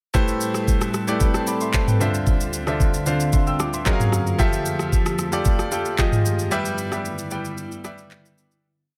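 Set in a light reverb, this hypnotic, late-night amapiano piece in A minor moves at 113 BPM. Up front, a clear, intimate concert grand piano plays rhythmic chords in spread voicings, with grace notes, short fills and audible action noise. A glassy, ethereal FM pad holds dark, sustained chords through ensemble chorus. An electronic R&B drum kit keeps a steady shaker, knocking kick, syncopated rim click, handclaps and toms, while a break and fade-out from 6.5 seconds close the progression from Am9 to Em7/G.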